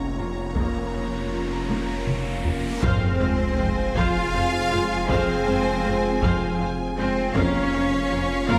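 Futuristic and relentless, this cinematic hybrid of orchestra and electronics moves in a slow 6/8 at 53 BPM in F minor, opening on a rich, close violin line over a chorused analog drone, a dark, ringing harp-like synth pluck with digital delay, and a thick, menacing detuned saw bass. Just after the start, an electronic riser builds while clear violas, soft-attack French horns, intense cellos and smooth double basses enter, and a taiko ensemble with heavy sticks joins at 0.6 seconds, driving a drum fill into an impact at 2.8 seconds. From there a focused, lush violin melody floats in the background as the harmony shifts from B-flat minor over F to F minor and then back to B-flat minor over F, all carried in a concert hall reverb in this excerpt from a longer piece.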